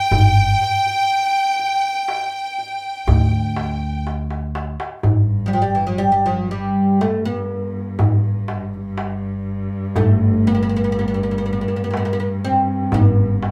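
Recorded as a band playing live in one room with a short, wet studio reverb, this passionate Arabic maqam ensemble in G maqam rast moves at 122 BPM in a straight 10/8: a woody, fretless, plectrum-plucked oud carries the melody over steel-strung pizzicato upright bass and a deep, clay-shell darbuka played with soft hands, while a lush, bright symphonic violin section and a rich, vibrato-laden solo violin hold a high second line until 4.0 s, a drum fill leads into the next passage at 5.0 s, and a smooth bowed cello drone enters there beneath the oud.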